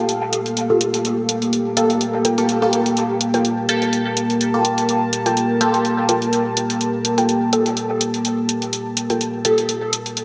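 A dark analog pad opens this meditative, hazy dub techno excerpt in G minor at 125 BPM, holding a sustained Gm9 chord up front with a deep, detuned sawtooth body, chorus and a slow attack. A tape-toned electronic hi-hat sits close from 0.1 seconds with a 55% swing on the sixteenths, and from 0.7 seconds a muted, filtered dub chord stab with a moving notch, phaser and dub echo decays alongside it. At 2.2 seconds a warbling, lo-fi pluck with chorus and dub echo drifts in the background, all of it set in a lush hall reverb with bright 1980s-style digital production.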